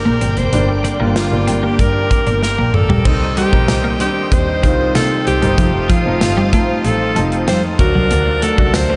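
This 1980s-style pop excerpt feels urgent and dramatic, moving at a steady, straight pulse and cut from a longer piece. Up front, a bright alto saxophone carries the solo melody with light vibrato and a diffuse ambient delay, while a clear, polished grand piano accompanies it through a lush chorus. In the background, a vintage, warbling organ-string ensemble holds sustained chords through phaser and ensemble chorus, and a twangy, picked twelve-string electric guitar plays a compressed riff with analog chorus and delay. Underneath, a single double bass is bowed sul tasto, intimate and close with an airy tone, and an acoustic studio drum kit with a tight kick, medium-tuned snare, hi-hat, toms, tambourine and crash adds a fill from 2.4 to 3.1 seconds. The harmony moves from Gm to Cm at 3.1 seconds, then through F7 to D, all set in a dreamy mix soaked in a huge ambient reverb with its top end rolled off.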